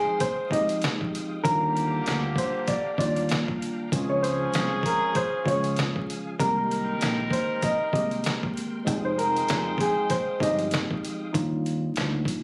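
A dark, woody upright piano carries the melody at the front of the mix, its mellow tone given a long sustain and a slapback echo before it stops at 10.7 seconds. This nostalgic boom-bap hip-hop fragment, cut from a longer piece, moves in 4/4 with a swung sixteenth-note feel over chords cycling from Fm9 through Ebmaj9, Dbmaj7 and Abmaj9. Beneath the piano, a worn, slightly out-of-tune tine electric piano supplies clean accompaniment with a cassette-tape character. A distant, roomy horn section in jazz style punctuates with warm stabs, while a very quiet, reedy tonewheel organ holds sustained chords with key click, light overdrive, chorus vibrato and a fast rotary speaker. A gritty, pitched-down sampler-style drum kit, compressed and re-recorded in a small room, sits up front with a thumpy kick, hi-hat and medium-tuned snare. A deep, round dub bass enters at 1.5 seconds after the opening break, and the track is framed by phone-in-the-room studio ambience and vinyl crackle.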